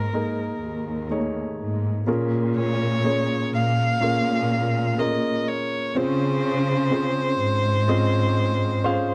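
A lone violin, a mellow grand piano and a lush cello section all sound together from the start of this heartbroken pop ballad excerpt, with the violin carrying a dark, boxy melody played sul tasto with soft attacks, airy bowing and vibrato. The piano accompaniment is smooth and vintage-toned, its action noise audible, while the bowed cellos hold an expressive, warm bass line beneath. Everything is captured dry and up close in the manner of a 1970s studio, and the harmony settles from Absus2 into Bbm7 at 2.1 seconds, then Dbmaj7 at 5.9 seconds.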